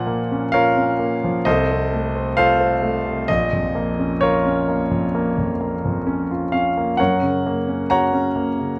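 Unfolding in a slow, rubato 4/4 at 65 BPM, this romantic character piece for solo piano moves through a warm, lyrical passage in Bb minor, touching an F7 over C before settling onto Gb near 7.0 seconds. The concert grand sounds intimate and polished, sitting up front with deep bass, long sustain and audible action noise, spanning Bb1 to Bb5. Close, detailed miking sits within a moderate recital hall reverb, and the 8.8-second fragment is cut from a longer work.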